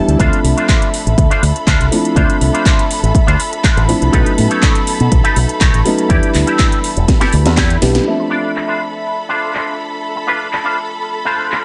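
Nu-disco with a sensual, sleek mood, this short cut from a longer piece rides a straight 4/4 feel over a Dm7, B7 and Em7 progression. A punchy, tape-warm electronic kick sits prominently beneath a layered house kit of cabasa, handclaps, metallic hi-hats and a cracking snare, the hats, snare and percussion filtered soft at the top and set in studio reverb. An up-front fingered bass with a bright envelope filter carries the low end, while a clean, picked, twangy electric guitar plays a compressed, filtered riff dressed in chorus and delay. A dark, mellow grand piano with a boxy tone and long sustain supplies accompaniment through delay, and a distant, lush string section holds woody, vibrato-rich chords that pump against the sidechain. A drum fill runs from 7.1 to 8.1 seconds, with a band accent landing at 7.9, after which the kick and bass drop out and the remaining parts carry the closing section under light reverb.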